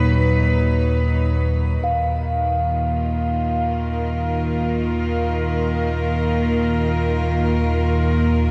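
In free time, this dark ambient drone unfolds as a desolate, cavernous passage cut from a longer piece. A deep rumbling drone of detuned, wave-folded triangle and sawtooth tones holds the low end throughout, its slow attack and long release giving it an ominous weight. Above it, a rich studio cello section sits up front, sustaining bowed chords with a soft attack and a pure, floating sul tasto tone, haloed in shimmer reverb. At 1.8 seconds a bronze singing bowl, struck with a suede striker, enters in the background, its metallic ring carrying a slow beating and a meditative quality, also bathed in shimmer. The whole is set in a huge, wet ambient space with a 7.3-second decay, lending the sound a vast, echoing depth.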